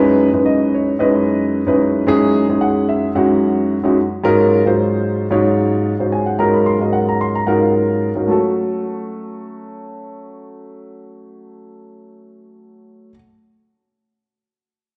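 A lightly swung 4/4 at 111 BPM drives this intense, nocturnal jazz excerpt in F# dorian, cut from a longer piece. A concert grand piano carries the accompaniment from 0.0 to 13.1 seconds, sitting up front with an intimate, natural tone, deep bass, audible action noise and a slapback echo, moving from F#13sus4 to G#13sus4 at 4.0 seconds before settling on F#m at 8.3 seconds. The sound is that of a live gig heard through the venue's PA, wrapped in a lush hall reverb and club ambience.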